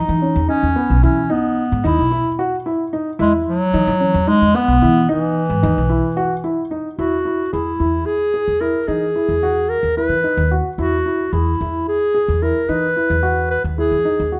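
A mellow clarinet, a dark baby grand piano and a pizzicato upright bass all sound together from the start of this playful, restless piece of contemporary chamber music, cut from a longer work. It moves in an uneven 7/8 at 221 eighth-note beats per minute with a straight feel, set in E Lydian. The clarinet carries the melody in a classical style, its soft attack and smooth top sitting up front as the loudest voice. The intimate piano plays arpeggios in a short-sustained, natural tone, with the noise of its action clearly audible. The woody, steel-strung bass anchors the low end. The harmony rests on an open E major seventh before a full Emaj7 arrives at 7.0 seconds, and light reverb gives the close trio a touch of space.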